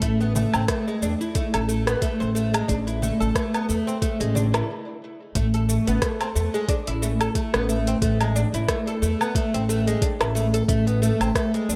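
Organic downtempo with a mystical, hypnotic pull, this excerpt is led by a bright, plectrum-plucked fretless oud playing arpeggios through tape echo, up front beside a woody pizzicato upright bass with sidechain pumping. A tape-warm electronic kick and an overdriven, layered deep house kit of hi-hat, rim click, shaker and woodblock carry the swung groove, while a very quiet, close and dry frame drum played with soft hands sits in from 0.4 to 4.5 s. After a brief stop from 4.7 to 5.4 s the second section begins, the whole dreamy mix soaked in plate reverb.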